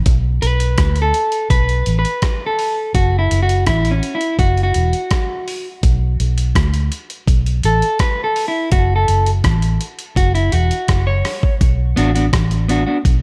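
Roots reggae in B minor at 83 BPM, this hypnotic, meditative fragment rests on a dark, round, foam-muted fingered bass up front and a gritty, compressed sampler-style drum kit with a thumpy kick, hi-hat and rim click re-recorded in a large room, while a slightly broken-up, picked electric guitar with tape echo accompanies and a clean electric guitar solo plays until 11.6 s, with the harmony moving to F-sharp minor at 8.7 s and landing on B minor at 11.6 s under light reverb.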